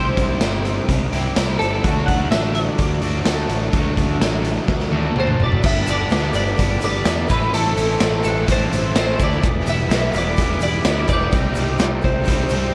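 Jangly and upbeat, this indie rock excerpt in a straight 4/4 opens with a clean, compressed twelve-string electric guitar carrying the melody through ensemble chorus and slapback echo, over a bright, double-tracked crunchy overdriven guitar riff, a fuzz-driven picked electric bass, and an up-front raw garage drum kit whose saturated, gritty sound fills a pumping stone room, with crash, hi-hat, kick, snare, tambourine and toms. During a drum fill that begins at 4.7 seconds, a bell-like glockenspiel struck with brass mallets adds a ringing second line from the background at 5.2 seconds. At 5.6 seconds a very quiet, shimmering retro pulse-width pad brings in slow-attack sustained chords alongside a grainy, close tube shaker as the harmony moves from G through Am and Em to Cmadd9. Light reverb and a worn, warbling cassette-tape pitch drift give the whole piece an aged, lo-fi patina.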